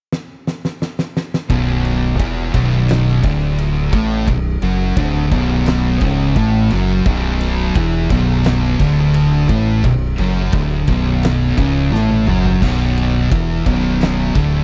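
A straight 4/4 groove at 86 BPM opens with a fill on an oversized, low-tuned acoustic drum kit, whose punchy kick, fat snare, toms and dark crash and ride cymbals sound saturated and gritty in a bright stone room. At 1.5 seconds this heavy, hypnotic stoner and doom metal settles on a B minor riff from three thick fuzz guitars: one sits up front, a darker one stays in the background, and a double-tracked one is very quiet, while a warm, overdriven, growling fingered bass stands up front. Another drum fill arrives at 11.9 seconds in this dry, close, 1970s-style studio sound, cut from a longer piece.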